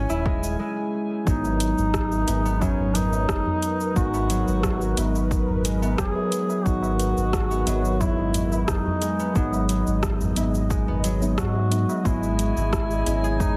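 Hypnotic and warm, this organic downtempo excerpt at 89 BPM in G# minor sets a distant, roomy duduk melody with vibrato and scooped notes over ringing, fingerpicked concert harp arpeggios, a round analog bass up front, a smooth, detuned analog pad, and muted felt-like synth keys that enter at 1.2 s, with the pad, keys and bass pumping to the sidechain; an overdriven electronic kick, a deep house kit of cabasa, metallic hi-hat and rim click, and very quiet high-tuned tabla drive the groove, while a glassy, drifting glass-harmonics texture surfaces only at the opening and again from 12.3 s, and the whole mix carries a heavily compressed, radio-like sound with light reverb.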